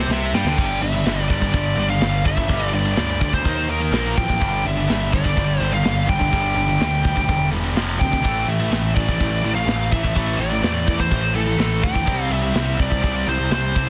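A short drum fill opens this epic, aggressive heavy metal excerpt, and the full band is already sounding as the main section takes hold at 0.6 seconds, driving in a straight four-beat feel. Up front, a dark, high-gain lead guitar carries the melody with distortion and a trail of delay. Beside it, a growly, fuzz-soaked picked electric bass sits just as forward, with a bright, overdriven edge. Behind them, two heavy high-gain guitars and a tight, double-tracked distorted guitar pick through the riff, adding a bright, distorted layer. The acoustic studio drum kit punches with a tight kick, a medium-tuned snare and bright crash cymbals. Light reverb surrounds the parts, and the dense, heavily limited modern master keeps the whole thing loud and compact.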